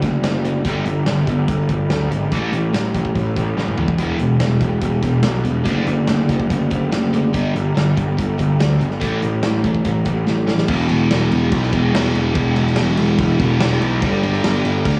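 Driving and heavy, this hard rock excerpt in E minor charges along at 144 BPM, with a sludgy, double-tracked overdriven guitar riff and a growly fuzz bass sitting up front throughout. A huge arena drum kit with a punchy kick, medium-tuned snare and big-room sound carries the groove, dropping in fills at 3.6 and 10.3 seconds before the music shifts to a new section at 10.7 seconds. The guitar and drums carry a cassette tape colour, and the whole home recording sits in light studio reverb.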